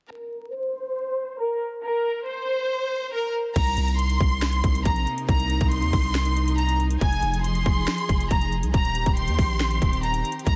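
Eerie, dark half-time trap hip hop at 139 BPM in C minor, cut from a longer piece, where a clear, focused violin section carries the melody through a filter sweep and digital delay before a distant, woody symphonic string section, a deep sine 808 bass and an up-front trap kit of hard-clipped kick, sharp snare, metallic hats, finger snaps and crash enter at 3.6 seconds over Cm7, Fm7 and Eb6 chords, all set in digital ambience with vinyl crackle and a dense, heavily limited master.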